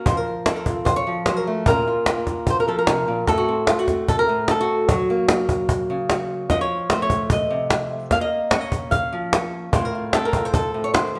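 Flamenco excerpt at 149 BPM in F phrygian dominant, dramatic and mournful, with an up-front, warm, fingerpicked acoustic flamenco guitar carrying the melody from A2 to F5 with audible finger squeak, over a woody cajon played with soft hands and faint snares, both set in a stone room whose reverb lingers around the chords moving from F through Bbm, Am6 and Gb before settling on F/A at 9.7 seconds.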